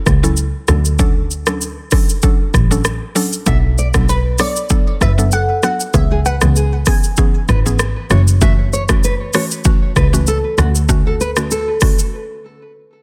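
Dense, heavily limited and nearly dry, this mellow, hypnotic afrobeats excerpt at 97 BPM in F# minor rides on an up-front electronic drum kit with deep kick, crisp hats, rim click, shaker and a soft-clipped snare, a bowed, focused double bass with vibrato, and a woody, round FM mallet-like synth pluck with chorus over F#m7, Dmaj7, Bm7 and C#m7 chords, while a dark, fingerpicked nylon-string guitar with delay enters at 3.5 seconds and a crystalline wavetable pluck melody with chorus, delay and a filter sweep sounds from 4.1 to 8.1 seconds before a break at 12.1 seconds.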